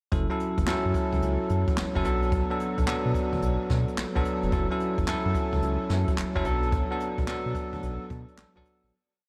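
Slick and bouncy, this short new jack swing R&B piece sets syncopated chord stabs from a bell-like tine electric piano with subtle chorus over a round, deep analog bass playing a swung synth-funk line full of muted ghost notes and chromatic approach notes, while a brushed drum kit with a boomy kick, hi-hat and clap-layered snare drives a hard-swung drum-machine beat, all soaked in a dreamy, huge ambient reverb as the F#m7 and Bm7 chords alternate before a fade-out from 6.7 seconds.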